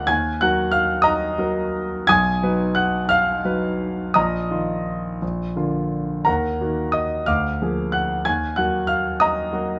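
Passionate and bittersweet, this short excerpt from a romantic character piece for solo piano unfolds in Eb minor with a rubato feel, its dotted-quarter pulse sitting around 55-64 BPM in 6/8. A concert grand carries the whole performance, sounding smooth and vintage with a deep bass and an up-front presence, ranging from Bb1 up to Ab6. The harmony moves from Ebm to B, then settles onto a Bbsus4 at 4.1 s that resolves to Bb before returning home to Ebm. A Bb7/D passes through at 7.3 s on the way back to Ebm. Light reverb gives the piano a modest sense of space, and the tone has a softened top end that suits its aged character.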